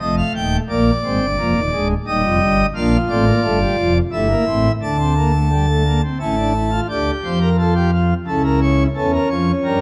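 A pipe organ on its principal chorus opens immediately, alone and up front, playing a baroque-style four-part fugue in triple metre with a straight, stately and joyful feel. Its full, romantic voicing spans from a deep D1 up to A5, filling the short passage with layered counterpoint. The harmony moves through F, Bb7, Eb and Bb before passing over a diminished chord and a suspended A to settle on A. At 6.9 seconds a second section begins on D minor, turning toward A/C# and A7/E as the fragment breaks off at 9.8 seconds, cut from a longer piece. The organ sits in a wet scoring-stage reverb that lends the sound a spacious, resonant bloom.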